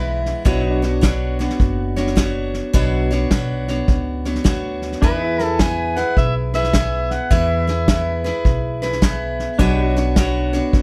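A dark production with light reverb frames this sunny, down-home slice of honky-tonk and classic country, cut from a longer piece and swinging along at 105 BPM in 4/4 with a loping shuffle on the eighths. A bright, full-bodied dreadnought acoustic guitar sits up front, picked throughout with audible finger squeak, while a woody, thumpy upright bass is plucked underneath. A natural country drum kit, recorded in a small room with a punchy kick and a medium-tuned snare alongside the hi-hat, comes in at 0.3 seconds and is the most forward part. In the background, a clean, compressed electric pedal steel played with fingerpicks holds sustained chords, using volume swells and slide. The amplified harmonica takes the solo, heard only in a brief flicker at the very start and then from 5.0 to 8.3 seconds, with gritty overdrive, light vibrato, tongue slaps and scooped notes in a jazz-inflected style, as the harmony moves from Bmadd9 to E and back.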